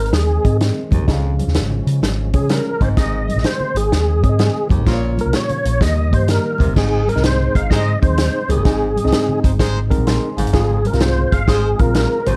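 A dark, lightly reverberant production sets this joyful, uplifting slice of uptempo 1960s-style soul in Ab major at 127 BPM, swinging in 4/4. A fat, overdriven tonewheel organ with key click, chorus vibrato and a slow rotary speaker leads the melody up front, soloing through the first 6.8 seconds. Beneath it sit very quiet percussive organ chords, a worn, slightly out-of-tune tine electric piano, a round picked bass, punchy acoustic drums with a rolled-off top, faint bright congas and a forceful baritone saxophone riff, while a smooth horn section adds a second line with plate reverb from 4.9 seconds, joining a band accent.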